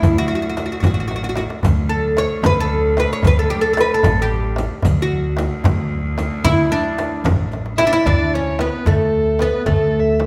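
Persian modal ensemble music in D dastgah mahur at 75 BPM in 6/8, cut from a longer piece and passionate in mood, with a bright, woody, fretless oud plucked up front on the melody over thumpy gut-string pizzicato upright bass and a biting, airy-bowed cello drone held until 8.1 seconds, while deep frame drum, tombak and the dark jingles of a riq sit in the background with a drum fill at 7.5 seconds, and a smooth, dark violin with vibrato enters at 7.8 seconds as a second line, all in a moderate recital hall reverb.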